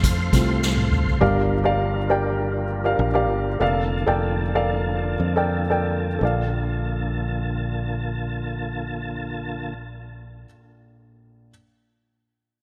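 Hopeful and warm, this piano-driven pop excerpt in Bb major moves in a straight 4/4 between 87 and 102 BPM. It opens with an upright piano solo and a drum fill from 0.6 s on a soft-mallet kit, whose boomy kick, snare, toms and hi-hat carry gated reverb before the drums drop out at 1.2 s. The woody upright piano sits up front with a growly, punchy fingered electric bass, while a clear tonewheel organ holds sustained chords through chorus vibrato and a fast rotary speaker until 9.7 s, as the tempo slows across the move from Gm7 to Bbmaj7/F inside a lush hall reverb with a bright 1980s-style digital sheen.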